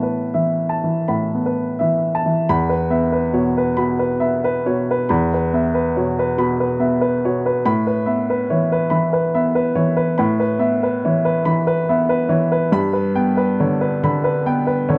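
A dark, softly reverberant sound frames this melancholic, reflective excerpt of neoclassical minimalist piano in E dorian at 93 BPM in 4/4, where a woody, natural upright piano plays alone and up front across a range from E2 to B5 with a rubato feel, moving from Asus2 to E5 at 2.5 seconds, back to Asus2 at 7.7 seconds and onto G at 12.8 seconds.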